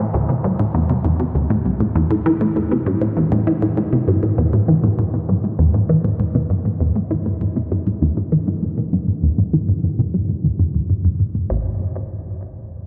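A straight 4/4 pulse at 99 BPM carries this cosmic, hypnotic ambient fragment in A minor, cut from a longer piece. A squelchy, detuned sawtooth pluck with a fast attack and short decay sits up front, playing a low riff from A1 to E3 until 11.8 s, colored by chorus, phaser and tape echo, with a filter sweep running across it until 11.5 s. A cathedral reverb with a 6.1 s decay places the riff in a vast, echoing space.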